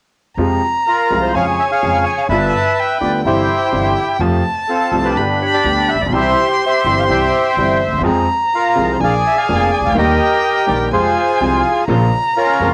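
A rubato tango in 4/4 at 125 BPM, this sultry, tense passage in F harmonic minor is cut from a longer piece and carries the soft haze of a home cassette recording in a small room with light reverb. A reedy, bright bandoneon sits up front with the melody from 0.9 seconds, ranging from C4 to Ab5. Alongside it, a single bowed violin plays a close, expressive second line high in its register, with vibrato, portamento and a soft attack, while a clear, polished concert grand piano supplies present accompaniment with a deep bass and short sustain. A pizzicato upright bass with steel strings adds a woody, warm foundation, and the violin, piano and bandoneon all share the tape's coloring. At 8.0 seconds a very quiet chamber string section enters with rich, earthy stabs under a smooth top and light vibrato as the harmony moves from Fm through Bb7 and Eb to close on Bbm.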